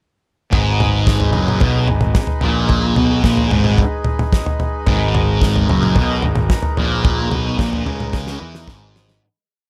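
Set in an audible studio ambience, with the drums and fuzz guitar up front, this short, hypnotic psychedelic rock piece in G# minor at 111 BPM rides on a thick, double-tracked, phased fuzz guitar playing a single-note riff that the round, punchy overdriven bass doubles in driving eighth notes, while a dry, damped 70s drum kit with a fat snare, tight kick and grooving toms holds a straight 4/4 feel, a reedy, nasal harmonium breathes dark sustained chords beneath, and the trippy groove fades out from 7.0 seconds as a drum fill arrives at 8.1 seconds.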